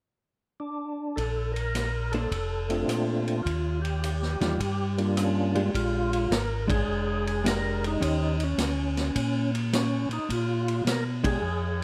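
Soul jazz organ trio at 105 BPM in 4/4, with a swinging eighth-note feel and a soulful mood, moving from Bb major into Bb mixolydian at 5.7 seconds in this short cut from a longer piece. A percussive tonewheel organ carries the melody from 0.6 seconds, its fat, lightly overdriven tone coloured by second-harmonic percussion, key click, chorus vibrato, a slowly turning rotary speaker and plate reverb. At 1.2 seconds a second, mellow tonewheel organ enters on the bass line, round and up front with gentle overdrive and its own slow rotary, alongside a vintage acoustic kit of hi-hat, kick, ride, rim click and snare, with dark cymbals, a punchy kick and a rolled-off top. A clean, compressed hollow-body electric guitar adds dark, picked accompaniment from 2.1 seconds. The harmony moves through Bbmaj9 and Ebmaj9, then Bb6, Eb6 and Bb5. The band hits accents together at 6.6 and 11.1 seconds, all set in a light room reverb.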